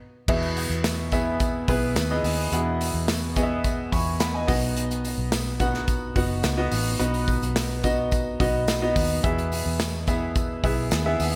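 A bright, 1980s-style digital production with light reverb and studio ambience frames this hopeful piano-driven pop piece in E major at 107 BPM, moving from E to B and back to E. A clear, woody upright piano with audible action noise and a lush chorus sits up front, adding a fill from 3.6 to 4.8 seconds, while a dark, round, foam-muted fingered electric bass gives punchy support. An acoustic studio drum kit with a punchy kick, a medium-tuned snare, hi-hat and crash sits up front in a pumping room, and a very quiet, jingly tambourine rings in a live room.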